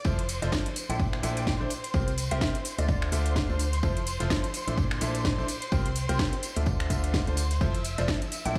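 A silky, bright analog string pad opens this euphoric piano house excerpt at 127 BPM, alongside a distant, roomy soul drum kit with dark ride cymbal and a tambourine set in the background, all riding a swung 16th feel. From 0.1 seconds a clear grand piano riff with digital delay plays over an Fmaj7, Bbmaj9#11, C7sus4 and Dm7 cycle, driven by a hollow, organ-like FM bass and a punchy, tape-warm electronic kick up front, while the string pad, piano and bass pump with sidechain movement. An overdriven house kit adds cracking snare, metallic hats and finger snaps, and a glassy, crystalline wavetable pluck with chorus sits in the background from 0.4 to 3.0 seconds before returning at 8.0 seconds.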